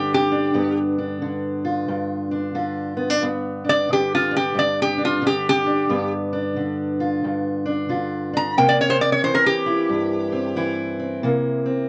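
A short, wet booth ambience surrounds this brief excerpt from a longer piece of acoustic country blues, with the room heard from further back while both guitars sit up front. It moves at a swaggering, soulful 90 BPM in 4/4 with a 63% swing on the eighth notes, in G mixolydian, tuned to A4 = 445 Hz. A lap resonator guitar, played with fingerpicks and a steel bar, carries the melody as a metallic, nasal slide solo until 10.8 seconds. Beneath it, a fingerpicked steel-string parlour guitar gives a dark, boxy accompaniment in the lower register and rings on alone to 11.9 seconds. The harmony rests on G7 before moving to C7 at 8.6 seconds.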